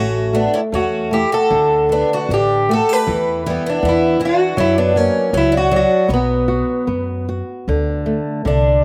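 A fingerpicked twelve-string acoustic guitar leads this mournful, passionate fado-style ballad in B minor, carrying the melody with a shimmering, octave-doubled archtop tone that sits up front. Beside it, a picked twelve-string adds a bright, boxy second line touched with slapback echo, while a flamenco guitar supplies warm accompaniment, its finger squeaks clearly audible. Beneath them an upright bass played pizzicato on steel strings gives a woody, growly, thumpy foundation. The pulse is a loose, rubato 78 BPM in 2/4, with chords moving through A5, D5, Em9, F#5 and B5 before returning to D5. The second twelve-string drops away at 7.2 seconds, and a new section begins at 7.7 seconds as this short cut from a longer piece draws to a close at 8.8 seconds with dry, outdoor clarity.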